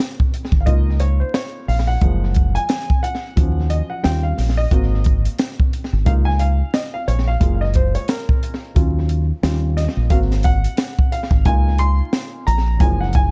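Smoky and cool, this jazz-hop fragment cut from a longer piece sets a dark, mellow grand piano with short sustain soloing over lush chords from start to finish, while a compact cocktail drum kit with a high-tuned snare, punchy kick and hi-hat sits dry and up front under tape echo, a round, deep dub fingered electric bass enters at 0.5 seconds, and the echo-heavy small-room mix is dusted with vinyl crackle.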